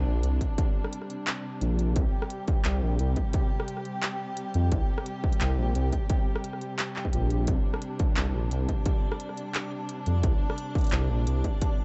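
Heavy and dark, this half-time drum and bass excerpt at 174 BPM pairs a rumbling, detuned sawtooth bass and a distorted, up-front electronic kick with handclaps, crisp hi-hat and rim clicks from an industrial kit, while a sul tasto chamber string section holds sidechain-pumped Csus2 chords and a reversed, granular swelling texture drifts in the background from 8.8 seconds, all in a dry, dark mix.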